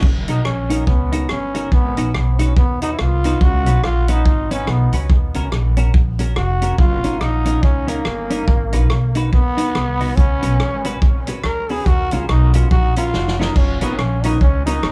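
A light reverb surrounds this upbeat, cheerful ska excerpt at 142 BPM in F# major, where a raspy, growling trombone with tape echo solos over up-front, thumpy pizzicato upright bass and a punchy vintage drum kit with a fill at 13.1 seconds, while a clean, picked electric guitar with chorus and tape echo swings beneath and a worn, slightly detuned upright piano adds brief stabs from 13.8 seconds.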